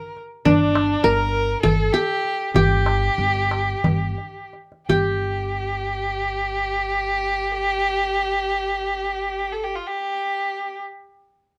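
This Turkish makam ensemble piece, cut from a longer work, carries a longing, melancholic mood in 7/8, with the eighth-note pulse running between 165 and 206 BPM and easing into a slowdown through the opening seconds. The qanun leads the melody up front, its fingerpicked triple strings giving a bright-edged, acoustic sparkle. A single bowed violin shares the same register as a second line, its rich, smooth tone shaded with vibrato, and it lingers alone briefly after the other parts finish, closing at 10.8 seconds. Beneath them, a pizzicato upright bass holds a low G with a woody, thumpy, dark sound. A small metal-shell darbuka played with soft hands adds crisp, high, closely heard percussion through the first section, dropping out at 5.2 seconds as the second section gets underway. A moderate studio reverb places the group in a modest room.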